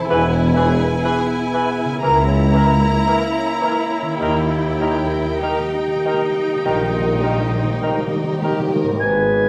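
Heard through a wet recital-hall reverb, this slow romantic orchestral passage, cut from a longer piece, has a yearning, elegiac mood. It moves at 48-64 BPM in 4/4 with a rubato feel. A violin section carries the melody with light vibrato and a soft, sul tasto intimacy, while a second violin line and an airy flute add further lines in the background and a distant cor anglais contributes its own line. A studio viola section and a roomy bassoon provide the accompaniment, and a mellow French horn section holds sustained chords above fingerpicked, ringing harp arpeggios. The bass comes from a dark double bass section with a smooth top, a distant cello section and a tuba, all beneath the harmony as it moves from E through A#dim/C# to D#. Articulate timpani played with hard mallets enter at 4.2 seconds for a fill, and a dark solo trumpet adds a brief stab at 9.0 seconds.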